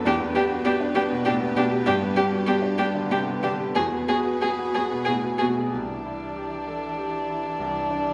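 A brilliant baby grand piano sits up front in this melancholic, fragile neoclassical passage in 3/4, its accompaniment ranging from deep bass notes up into the middle register with a rubato feel. Close beside it, a single violin carries the melody from 0.1 s with light vibrato, a soft attack and an airy, sul tasto bow that gives it an intimate voice. Further back, a lone cello adds a dark, woody second line, while a rich viola supplies accompaniment until it drops out at 5.5 s. A chamber string section, warm and gently bowed, holds sustained chords in the background as the harmony moves from Em7 through G and Eadd9 before turning to Cadd9 at 5.7 s. The whole is set in a recital hall reverb with a 1.4-second decay, and the passage is cut from a longer piece.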